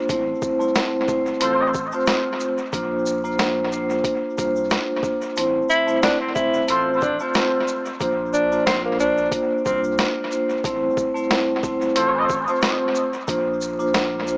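Tough and gritty, this swung boom-bap hip-hop groove rests on a soft-mallet vibraphone with a cassette-tape tint and slow motor vibrato, over a round sine sub bass and a compressed, pitched-down sampler drum kit with a thumpy kick and high-tuned snare, plus a grainy tube shaker tucked in the background. Brief, veiled stabs from a cup-muted trumpet section punctuate the Am, F/A and Bbadd9 cycle, and after the kick drops out at 5.4 seconds, a mellow, subtoned tenor saxophone solo with scooped notes enters at 5.7 seconds and plays until 9.8 seconds. Dub echo on the drums, shaker, trumpets and saxophone, light reverb and a small-speaker sound give the mix an echo-heavy, gritty character.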